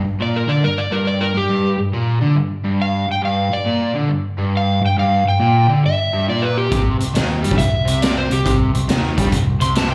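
A swung 4/4 groove at 138 BPM drives this swaggering, gritty slice of blues rock power trio and southern rock, cut from a longer piece and heard as a live gig through a club's PA with light reverb. An overdriven semi-hollow guitar opens at once with a riff between G2 and G3, its hollow-body tone picked and double-tracked up front with slapback echo over a G5 chord. A dark, overdriven slide guitar joins at 0.2 seconds, carrying the melody high between G4 and C6, fingered and also touched with slapback echo. At 6.7 seconds the harmony moves to C5 as a growling picked electric bass, bright and overdriven, enters alongside a raw garage drum kit of hi-hat, punchy kick and medium-tuned snare. The drums sound saturated and mid-forward in a small room with a rolled-off top, giving the closing seconds a rough, close-up weight.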